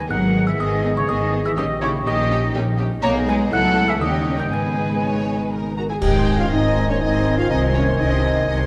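Quirky and sneaky, this whimsical cinematic cue in G# minor moves at 122 BPM in 3/4, with a delicate, tinkling music box carrying the melody alongside a soft-edged violin section while a pure, crisp flute and a focused violin section add second lines; mellow French horns sustain chords, a ringing harp arpeggiates, and violas with portamento join cellos and double basses underneath, until a band accent at 6.0 seconds brings in a dark clarinet, a distant oboe, a very quiet bassoon, and bright clash cymbals with concert bass drum, all wrapped in a dark, reverberant concert hall.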